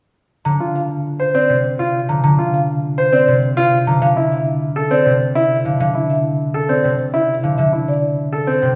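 In a straight 3/4 pulse at 101 BPM, this bright, hypnotic minimalist classical excerpt in Bb lydian sets a woody, round soft-mallet marimba melody over polished baby grand piano arpeggios and a ringing concert harp accompaniment pitched low, the three sounding together throughout as the harmony moves from a rootless Bbsus2 to D7 at 4.0 s, all heard from further back in a wet recital hall with a reverb that rings for 1.9 s.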